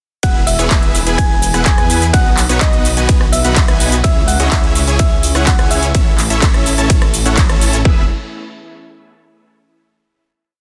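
Anthemic and uplifting, this festival progressive house piece opens straight into a drop where a huge, euphoric supersaw lead pumps a bright, close-voiced chord riff with tape echo over a thick detuned saw bass and a punchy four-on-the-floor kick. A round, tine-like thumb-piano-style pluck with chorus and tape echo sings short melodic phrases until 6.2 s, while a very quiet, lush unison pad joins at 1.0 s. The big-room dance kit adds metallic hats, claps, rim clicks, ride and shaker, all in a dry, dense, heavily limited mix that resolves on a final chord at 7.9 s.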